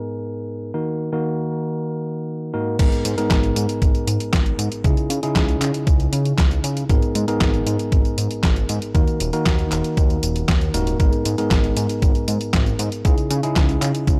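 A clean tine electric piano, up front through its built-in speakers with a low-pass filter and analog delay, plays G# minor stabs alone until 2.8 s, when a fat, nasal, saturated sawtooth bass, a thumpy sampler-style electronic kick and a detuned 8-bit drum machine with filtered snare, hi-hat, handclaps, tambourine and crash cymbal join in this nostalgic, melodramatic italo disco cut at 117 BPM, its dry, gritty hardware sound moving through G#madd9, D#m and C#madd9 chords.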